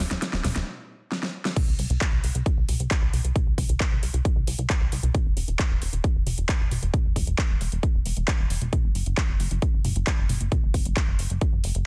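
A dark, plucky sawtooth bass and an overdriven big-room drum kit with a huge snare, metallic hats, handclaps, toms and crash open this euphoric, emotional uplifting trance clip at 134 BPM in straight 4/4, building with drum fills around a brief stop. At 1.6 seconds the drop lands as an up-front, punchy, overdriven electronic kick enters alongside the funky filter-plucked bass, with sidechain pumping on the bass and on the kit's hats, toms and cymbals. The sound is dry and dense with a heavily limited modern master, cut from a longer piece.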